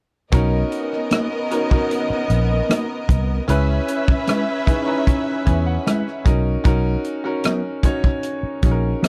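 A relaxed 76 BPM in straight 4/4 carries this romantic 1970s-style soul excerpt in B major, with a warm drum kit of tight kick, hi-hat and rim click sitting up front beside a round, punchy muted electric bass. A brilliant grand piano plays chords over Bmaj7 and C#m7 and adds a fill from 4.3 to 6.7 seconds, while a lush bowed string section with vibrato plays a second line until 6.2 seconds. A mellow, clean, compressed electric guitar enters at 1.1 seconds with a dark fingered riff that continues into the closing section.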